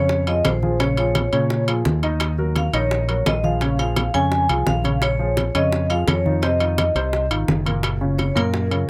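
Afro-Cuban jazz at 171 BPM in Bb minor, fiery and sultry, this short excerpt has a metallic, ringing vibraphone with medium hard mallets and a medium motor vibrato carrying the melody, while an intimate baby grand piano with audible action noise and short sustain comps beneath it. A bright, up-front fingered electric bass anchors the harmony as it moves from Bbm7 through Ebm9 and a third-less F7 to Gbmaj7. Tight, high-tuned bongos played with hard hands, low-tuned congas sitting in the background, and saturated, compressed metal-shell timbales fill out the percussion in a dry, close sound.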